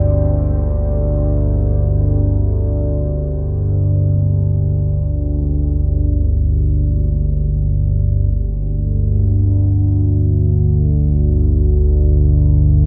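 Dark ambient drone in free time and G minor, desolate and dark, cut from a longer piece and steeped in a wet cathedral reverb. An up-front analog drone of sawtooth and pulse waves with lush chorus and pulse-width modulation holds low through the whole 12.9 seconds, while a deep, detuned unison pad with a sub octave fades out in the background over a Gm(add9) chord. A soft, metallic bronze singing bowl rings with slow beating until 8.3 seconds, leaving the evolving drone alone on a bare G5.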